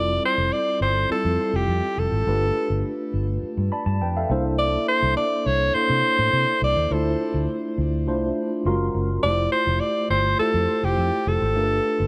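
Polished 1980s jazz-funk pop with an urban, upbeat mood, where a punchy alto saxophone with subtone, vibrato and scooped notes carries the melody through digital delay over a mellow tine electric piano bathed in lush chorus, which adds fills at 3.4 and 8.4 seconds, while a dark, round, foam-muted fingered electric bass sits up front, all in a light small-room reverb across a chord cycle that slips briefly to Gbmaj9 before resolving to Fmaj9.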